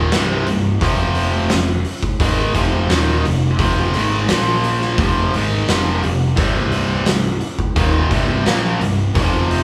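Gritty and smoky, this short cut from a longer blues rock and southern rock power-trio piece pairs a tight, bright, double-tracked distorted guitar riff with a growly fuzz-overdriven picked bass and an oversized low-tuned acoustic drum kit, its boomy kick, fat snare and hi-hat saturated and pumping in a big room, all played live together in one small room with light reverb over a Cm, F5 and Bb5 progression.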